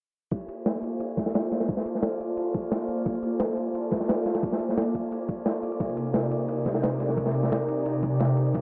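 Lush and warm, this excerpt from a longer piece of liquid drum and bass moves at 175 BPM in 4/4 with a straight feel, set in Bb major. A glassy FM pad sits up front with ethereal, warbling sustained chords from C3 to D5, its slow attack and long release softened by ensemble chorus and built-in reverb, with sidechain pumping tying it to the beat. It enters at 0.6 s on Bbmaj9 and moves to Cm7 at 5.8 s. Underneath, a crunchy breakbeat kit gives gritty, saturated snare and dark, rolled-off ride cymbal, joined by a knocking, overdriven electronic kick that stays up front and a very quiet, bright electronic hi-hat. All the drums play from 0.3 s, the kick and hats re-recorded in a small room, while a filter sweep runs through the whole passage and a moderate scoring-stage reverb with a low-pass filter gives the mix a spacious finish.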